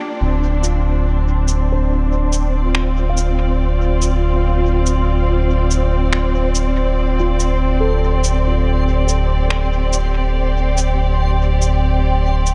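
Set in a light digital ambience, this deep, hazy fragment of ambient dub moves at 71 BPM in D minor, resting on a Dm7 chord with a 16th-note swing. A round, detuned analog bass sits up front from 0.2 s alongside a dark, woody symphonic string section holding lush bowed chords with vibrato. In the background, a ringing handpan plays meditative arpeggios through a low-pass filter and tape echo, and a reversed granular texture adds a dreamy haze, while pitched-down, muffled electronic cabasa and finger snaps with dub echo arrive at 0.6 s.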